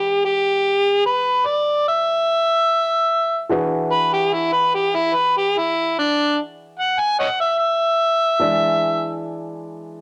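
Gritty and laid-back, this slow 12/8 blues excerpt at 49 BPM in E mixolydian sits on an E9 chord as an amplified, overdriven harmonica leads up front with a jazz-style solo full of tongue slaps, scooped notes, soft attacks and light vibrato until 9.2 seconds, while a warm concert grand piano with deep bass and short sustain accompanies quietly beneath it, both parts carrying a cassette tape character in a small, lightly reverberant room on a homemade cassette recording.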